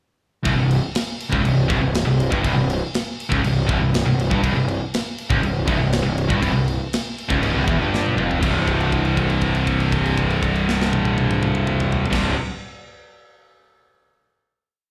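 Aggressive and heavy, this short heavy metal piece sounds like a live gig heard through a club's PA, with the room's reverb hanging around the band. Two distorted electric guitars play a low single-note riff over a C5 chord. One is scooped and high-gain; the other is picked and sits in the background, and both carry a slapback echo. An overdriven electric bass with a fuzzy, punchy tone sits up front, driving eighth notes that double the guitar riff. A tight metal drum kit with bright cymbals, a medium-tuned snare, kick, crash and toms holds a metal drive groove. A drum fill at 7.9 seconds leads into the final chord at 8.4 seconds, which is held to about 12.1 seconds before the piece ends at about 12.4 seconds.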